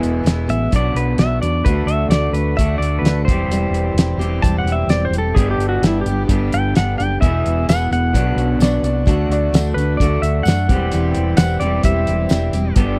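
A straight 4/4 beat from a cloth-damped, thuddy drum kit with a fat snare and a dark, round hollow-body bass up front drives this dry, close 1970s-style folk and heartland rock cut, where a picked acoustic guitar sits in the background, a bright, slightly broken-up electric guitar plays a lo-fi riff, very quiet bowed chamber strings hold earthy sustained chords, and a clean, compressed pedal steel guitar takes a warm, open-road solo full of slide and volume swells from 0.5 seconds, joined by a jingly, distant tambourine from 7.7 seconds and a brief woody upright piano line at 8.6 seconds.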